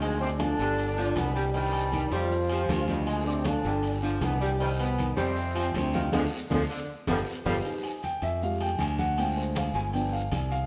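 Salsa with a passionate, driving feel, this clip from a longer piece has a band playing live together in a stone room whose reverb gives the ensemble a wet, spacious sound. Up front, a mellow, vintage-toned trombone section carries the melody with vibrato, while a punchy, edgy, close-miked saxophone section plays a tight second line beneath it. A woody, dark upright piano provides the accompaniment and a bright, direct fingered electric bass anchors the low end. The percussion sits in the background: close, dry congas struck with hard hands, ringing agogo bells and timbales, a raspy guiro and grainy, saturated maracas. After a band accent and a drum fill, the horns drop out around 7.6 seconds, and the upright piano takes a solo that runs to the end at 10.7 seconds.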